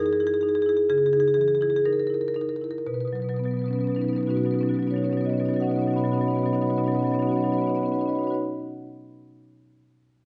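Flowing and warm, this short fragment of a contemporary classical piece for solo marimba moves at an unhurried 57-67 BPM in 4/4, with a supple, rubato feel in B major. The marimba, struck with medium hard mallets, plays alone from 0.0 to 8.4 seconds and spans F#2 to B5, its rosewood bars giving a woody, mid-forward tone that sits up front. The opening passage slows down as it rests on an F#13 chord, then at 2.9 seconds the music settles onto Badd9 for a new section. A wet recital hall reverb lingers around each note, and the sound stays soft-edged at the top.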